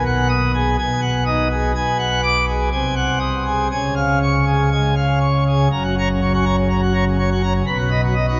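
Bathed in a 5.0-second cathedral reverb whose highs are rolled off above 7.5 kHz, this brief cut from a longer classical organ toccata in F# major at 123 BPM sounds brilliant and jubilant, as a solo pipe organ plays up front on a full plenum with mixtures in a romantic voicing, spanning F#1 to D#6 while the harmony moves from G#m7/B through G#7/B# and C# to arrive on F# at 5.7 s before turning to B at 7.7 s.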